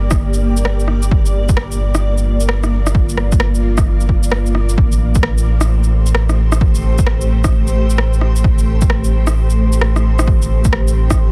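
A blurred, detuned granular cloud pad and a round sub bass open this wistful, nocturnal future garage fragment together, both pumping against the sidechain from the very start. The pad holds slow-attack chords that drift and evolve inside their own reverb, roughened by a vintage 12-bit sampler grit, while the deep sine bass sits up front with a fast attack and long sustained notes. A punchy, overdriven electronic kick arrives at 0.1 seconds alongside a layered rim click and shaker, carrying a loose, swung sixteenth-note feel. The harmony moves from Gm to Am7 at 4.8 seconds, lending the passage a gently unresolved, late-night ache. The mix is dry and dense, heavily limited in a modern style, with vinyl crackle running beneath it all.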